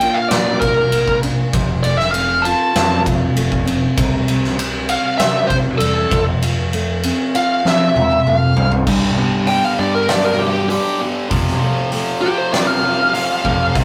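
A straight 4/4 pulse at 98 BPM drives this restless, cathartic stretch of quiet-loud alternative rock, cut from a longer piece: a huge arena drum kit sits up front with a fat snare and punchy kick, joined by a growling, overdriven fingered bass and a full-bodied dreadnought acoustic guitar fingerpicking arpeggios. A dark, bluesy distorted lead guitar carries the melody over chords moving through Bb, F and C, then after a drum fill from 7.6 seconds it breaks into a solo at 8.9 seconds as a tight, bright distorted guitar riff enters beneath it. The rough rehearsal-room recording carries light reverb and a warm, saturated grit.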